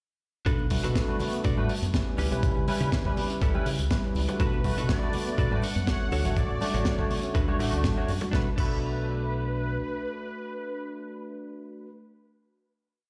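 A sensual, groovy nu-disco piece in B minor at 122 BPM, built on a straight four-on-the-floor pulse that moves from Bm7 to Dmaj7 and back. A gritty, thumpy overdriven electronic kick drives the groove beneath a tight funk kit with a high-tuned snare on the disco backbeat, closed and open hi-hats and crash, while ringing cabasa and hard-handed congas sit in the background. A dark, round fingered bass with an envelope filter plays a funky syncopated line, and a clean, direct-recorded electric guitar with lush chorus picks close-voiced funk chords behind a barky, lightly overdriven tine electric piano whose dotted-rhythm chords pump with sidechain, ensemble chorus and digital delay. A very quiet, soft pluck adds a 16-step arpeggiated sequence, and at 4.4 seconds a thick, detuned sawtooth unison lead enters with bright, vibrato-laden hook phrases. The percussion drops out at 8.3 seconds and the drums and pluck follow at 8.7, with the bass lingering until about 9.8 seconds, leaving guitar, electric piano and lead to ring out on the final Bm7 chord through a stone-room reverb that suggests a big sound system in a bare space.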